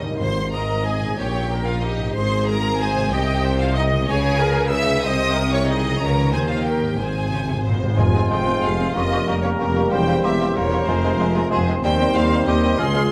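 A soft-mallet timpani fill opens this lively, cheerful and dramatic romantic orchestral passage in triple metre, where an expressive, vibrato-rich studio violin section carries the melody over lush symphonic second violins, intense violas, smooth cellos, distant double basses, a roomy tuba and a ringing, very quiet harp, until another timpani fill at 7.0 s leads into a new section at 8.0 s, where a punchy cor anglais, bright trombones, dark French horns, a hollow, pure flute, a soft-attack bassoon and tight, mellow trumpet stabs come in fully, all set in a moderate scoring-stage reverb.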